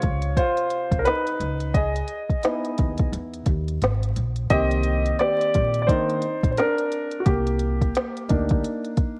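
A 4/4 groove swings its sixteenth notes, setting a cool, nocturnal jazz-hop mood in this short cut from a longer hip hop piece. The organic electronic drum kit sits up front with a soft kick, a woody snare and crisp hi-hats, all with a produced, electronic character. Beneath it, a dark, thumpy pizzicato upright bass on steel strings holds the low end until 8.6 seconds. The grand piano takes the solo role across the full 9.2 seconds, natural and close, moving through rich minor-ninth colours from a rootless Bbmadd9 to Dbm9 and then Cm9 at 4.5 seconds. Light reverb and studio ambience frame the playing, while worn cassette tape with warbly pitch drift and vinyl crackle gives the sound a faded, dusty patina.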